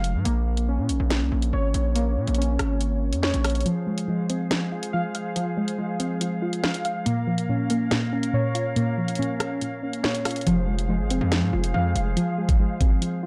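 A half-time drill groove opens this dark, tense hip hop clip, with a knocking kick, sharp snare, bright hats and rim clicks up front beside a saturated, distorted 808-style bass that drops out at 3.6 seconds and returns at 10.5 seconds. The kick is also muted across that same stretch. Warbling, detuned lo-fi synth keys play nostalgic arpeggios throughout under chorus and tape echo. From 3.7 seconds a soft, round, wave-folded pluck adds accompaniment, and a pure, distant flute section with vibrato holds sustained chords over a Bb minor to F minor progression, all set in light reverb and digital ambience.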